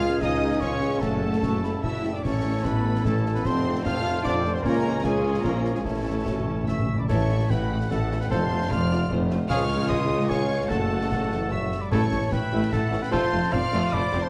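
A lush, focused symphonic violin section carries the soaring melody in this short cut from a heroic, adventurous film score at 149 BPM in 3/4, with pure flute, distant oboe and clarinet and a second violin section weaving secondary lines over soft-attack viola, mellow French horn chords, warm trumpet stabs, a clear double bass, tuba and cello bass, snare, bass drum and bright clash cymbals, and round timpani filling from 5.9 seconds, all set in a dark concert-hall reverb.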